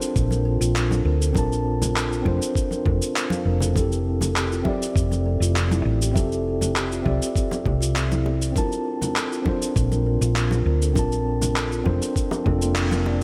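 Sunset chillout at 100 BPM with a sunny, warm mood, cut from a longer piece: a mellow, clean tine electric piano with digital delay and a woody, boxy kalimba playing delayed arpeggios float over Bbmaj7 and Fmaj9 chords, anchored by a dark, round, up-front hollow-body bass, a gritty, thumpy, tape-warm sampled kick, compressed electronic cabasa and handclaps, and ringing congas and bongos set back in the mix, all under light reverb until the kick drops out and the band hits an accent at 12.8 seconds.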